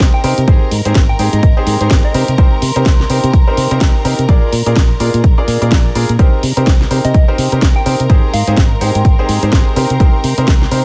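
A punchy, overdriven electronic kick drives this bittersweet, soulful piano house excerpt at 126 BPM in C minor with a swung 16th feel, alongside a house kit of cracking snare and bright hats, a round fingered electric bass, a woody upright piano riff with delay, distant bowed strings holding lush chords, a moody sawtooth pad with chorus and reverb, and a gentle warbling FM synth lead that surfaces from 0.1 to 2.2 seconds and again at 7.0 seconds, while the bass, piano, strings and pad pump against the kick over Abmaj7, Cm7 and Bb7 harmony.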